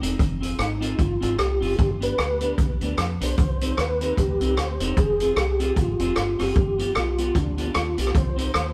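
A driving, mischievous ska groove at 151 BPM in C harmonic minor opens with a dark, clean picked electric guitar, a round, foam-muted fingered dub bass and an up-front street-band kit of hi-hat, rim click and boomy kick, swung lightly over a Fm–G–Cm progression. At 0.6 seconds a soft, flute-like tonewheel organ takes the melody, its chorus vibrato, key click, stopped rotary speaker and tape echo adding a mellow sheen. The band sounds live together in a stone room with moderate reverb, cut from a longer piece.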